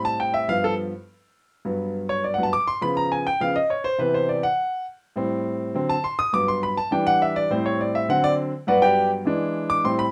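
Danceable and sunny, this brisk jazz excerpt features a lone concert grand piano, clear and up front with a deep, natural bass, playing straight through a chord progression that moves from G7 and Gmaj7 through C#7, Cmaj7 and a run of Am7, D7 and Em7 changes before landing on E7, all set in a moderate studio ambience.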